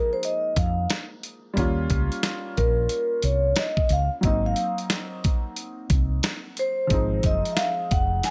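A mellow, ringing vibraphone played with soft mallets and a slow motor vibrato carries an up-front solo melody from the very start. Beneath it sits a worn, slightly detuned upright piano, low in the mix, in this cool, smooth jazz-hop excerpt cut from a longer hip hop piece. A gritty, compressed sampler-style kit with a thumpy kick and medium-tuned snare enters at 0.2 seconds with a swung sixteenth feel, and a dark, round fretless electric bass joins at 0.6 seconds. The harmony moves through rootless Db6, Eb7 and Ab9 chords to an Fm7, all in a dry, close sound with dulled highs.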